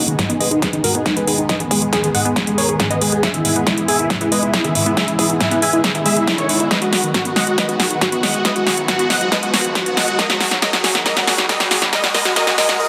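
Uplifting trance in a straight 4/4, this euphoric yet bittersweet passage from a longer piece is one continuous build-up, with a drum fill and filter sweeps running through it, including sweeps on both the supersaw lead and the analog pluck. A huge, detuned supersaw lead carries the melody in the synths, its bright sawtooth tone compressed and sustained, shaped by a low-pass filter, sidechain pumping and delay. A very quiet, punchy unison lead with a noise layer and phaser adds a second line. Beneath them, a round, warbling analog pluck spins arpeggios with vintage 12-bit sampler grit, chorus and digital delay, while a lush, thick pad with a sub octave and slow attack holds the G#m, E, B and F# chords in the background. An electronic riser creeps in faintly at 3.7 s. The big-room kit pushes a punchy snare and metallic hats to the front, and a layered electronic kick sits further back, all set in a lush hall reverb and a dense, heavily limited modern master.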